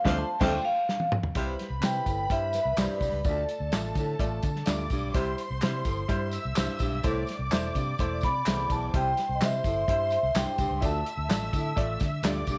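Lightly reverberant and compact, this short cut from a longer uptempo 1960s-style soul track has a driving, urgent feel in a straight four. It opens with a band accent capped by a drum fill, and the tambourine and handclaps, with an egg shaker, join at 1.4 seconds. The up-front drum kit sounds dark and tight with a rolled-off top, while the foam-muted fingered electric bass is round and punchy beneath a breathy, close-miked baritone saxophone riff with scooped notes and vibrato. A woody upright piano supplies accompaniment with short sustain, and a lush, distant bowed string section carries a second line higher up. Leading the arrangement, a metallic, ringing vibraphone played with medium mallets states the melody in two phrases, returning at 8.2 seconds, over chords that move among D minor, C and A minor.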